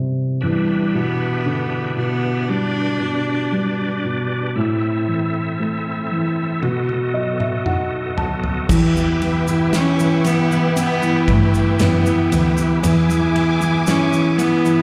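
This melancholic, longing pop ballad excerpt moves at a slow 58 BPM in E minor, opening at 0.0 seconds with a dark, woody upright piano, soon joined by a rich, smooth bowed cello melody, both touched by slapback echo, and a reedy tonewheel organ with key click and fast rotary-speaker swirl. A natural country drum kit with dark cymbals enters alongside a piano fill and drum fill at 6.6 seconds, and at 8.7 seconds the harmony shifts to E dorian as a lush, distant violin section, a focused bowed double bass and a grainy egg shaker fill out the arrangement. The whole performance sounds like a live gig heard through the venue's PA, carrying the spacious reverb of a recital hall.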